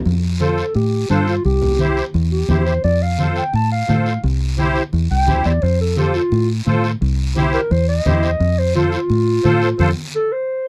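A joyful, sunny cumbia fragment in F major opens at 0.1 s with a deep, round fingered electric bass sitting up front, its foam-muted, amped tone anchoring the low end. Low-tuned, thick-skinned congas sit in the background with a distant, large-room sound, while a raspy guiro adds a small-room texture. At 0.4 s, a dark, classical-style clarinet takes the solo melody, its tone roomy, and a reedy, shimmering musette accordion comes in up front to accompany it. Moving at 173 BPM in a straight 4/4, the harmony alternates between F and C throughout. A brief band accent arrives near the end, and the clarinet carries on until 10.7 s, all within a dry, close studio sound with a touch of light reverb.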